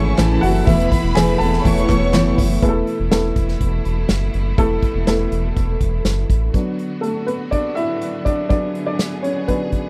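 A woody upright piano leads this anthemic, hopeful piano-driven pop passage, taking the spotlight in the opening seconds and again from 6.5 s, supported by a punchy acoustic drum kit played with bundle sticks, a deep, round analog bass, a lush studio string section holding sustained chords, and, only until 2.6 s, a bright fingerpicked steel-string guitar riff and a symphonic violin section singing a second line with vibrato, while crisp handclaps sit in the background until about 2.3 s, all captured in a dry, close 1970s-style studio sound.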